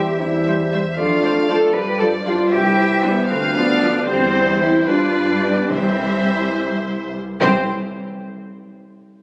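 Cheerful and spirited, this brief cut from a quick classical-period movement for symphony orchestra moves in a lilting 6/8 with a rubato feel, easing into a slowdown from 3.3 s as the cadence nears. Muted, con sordino violins carry the veiled melody in the background, while a second violin line, a shadowy, distant clarinet and an airy, expressive flute entering at 0.2 s weave supporting lines around it. A mellow solo bassoon and close, softly bowed violas fill in the accompaniment, and a French horn section holds gentle sustained chords with light vibrato. Dusky cellos and double basses anchor the bass with a smooth top, and soft-mallet timpani add a round tap from 5.7 s. The sound sits in a moderate concert hall ambience, captured on a phone in the room, with added club reverb and compression.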